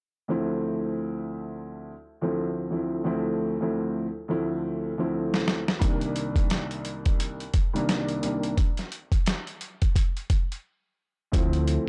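A mellow, boxy grand piano with a tape-worn, filtered tone opens this dark, moody boom-bap hip-hop excerpt, drifting from Dm9 to Cm9 over a swung groove. A gritty, overdriven sampler-style kit with a thumpy kick and mid-tuned snare comes in with a fill at 5.3 seconds, sounding compressed and up front as if re-recorded in a small room. After a brief break, a round, deep dub electric bass slips in at 11.3 seconds as the harmony returns to Dm9, all under light digital reverb.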